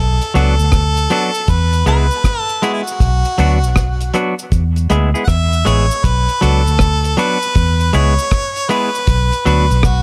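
A clear harmonica carries the melody through this hypnotic, serious roots reggae excerpt, its present, lightly vibratoed tone sitting up front with a touch of tape echo. Underneath, a vintage muted fingered electric bass lays down a round, punchy, foam-muted line that is the loudest part in the mix. A deep reggae drum kit enters at 0.2 seconds with hi-hat, kick and rim click, its dry, dark sound and tight kick giving the groove a rolled-off top. A semi-hollow electric guitar joins at 0.3 seconds with clean, picked, compressed accompaniment, also touched by tape echo, while a saturated cabasa sits in the background. The tune moves at 79 BPM in 4/4 with a swung sixteenth feel in B dorian, alternating between Bm and E under a light reverb.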